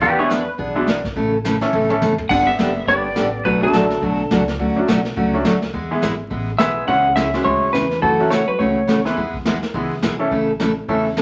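Wrapped in vinyl crackle and a small room's reverb, this playful, cheerful western swing excerpt bounces at 210 BPM with a swung feel: a brief pedal steel guitar phrase with volume swells opens it over a picked dreadnought acoustic guitar, a growly pizzicato upright bass, a brushed vintage drum kit with dark cymbals and a drum fill at 1.7 seconds, and a brilliant upright piano with audible action noise, before a compressed, slide-played lap steel carries the melody in two phrases from 2.3 seconds, shadowed by a hollow-body jazz guitar in the background.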